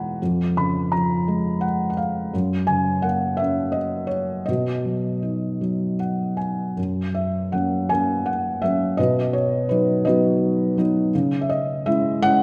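Peaceful and warm, this short classical passage for solo piano unfolds at a lyrical, rubato pace of about 55 beats per minute in a gently lilting 6/8, set in B major with the tuning pitched slightly high at A4 = 444 Hz. The sole instrument is a felt-muted upright piano, heard up front and close, its tone soft, dark and intimate, with the thick felt dulling every hammer strike and the clicks and thumps of the action audible beneath the notes. It spans from a low E2 up to C#6, moving through harmonies that open on C# over E#, pass through F# and B, and close on a C# minor chord. Midway, a brief piano fill from 5.6 to 6.8 seconds bridges the opening phrase into a second passage that begins at 6.8 seconds. A moderate hall reverb, about 1.8 seconds long, gives the close, mellow instrument a sense of a church or concert space around it. The 12.4-second fragment is clearly lifted from a longer piece.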